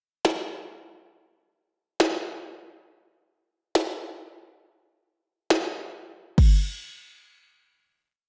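A dreamy, reverb-soaked mix opens this short hip hop piece, with a lush digital hall lending the whole track a hazy, spacious mood. It moves in free time, built around a single glitchy electronic drum kit that enters at 0.2 seconds and sits up front in the mix. The kit pairs a deep kick and a tiny snare with a crash cymbal, playing a sparse half-time beat. Overdrive and vintage 12-bit sampler grit give the drums a crunchy, lo-fi edge against the roomy ambience. The breakdown gives way to a final hit at 6.4 seconds, and the drums stop at 6.5 seconds.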